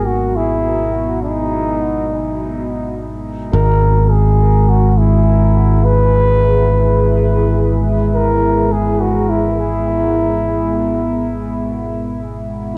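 A clear, present trombone carries the melody up front in a classical solo style, its tone colored by cassette tape and trailed by dub echo until it stops at 12.2 seconds. This short ambient dub passage, cut from a longer piece, drifts in free time with a spacious, deep mood. Beneath the horn, a dark, moody pad built from detuned sawtooth and sine voices with a sub octave holds sustained chords, its slow attack and long release softened by chorus, its own reverb and tape grain. A bright, growly fingered electric bass sits close and direct, anchored on a low G#, with transformer saturation adding bite. The harmony shifts from G#m9 to E/G# at 3.5 seconds, and a moderate spring reverb and the character of a home cassette recording give the whole piece an intimate, roomy feel.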